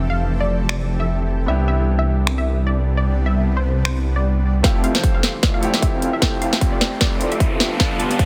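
Playful and bright, this future bass excerpt moves at 152 BPM with a swung, half-time feel in F lydian, as a detuned, wave-folded unison pluck carries the melody over a brilliant grand piano with audible action noise, an ethereal ambient pad with octave-up shimmer, and a thick, chorused saw bass up front, all pumping to the sidechain. A trap kit with a sharp snare and metallic hats enters at 0.7 seconds, and at 4.6 seconds a punchy, overdriven electronic kick and a smooth supersaw riff under a filter sweep arrive as the build-up begins with a drum fill. A background riser joins at 6.2 seconds, capping a dense, heavily limited and dry mix that moves from Fmaj7 to Cmaj7 and back.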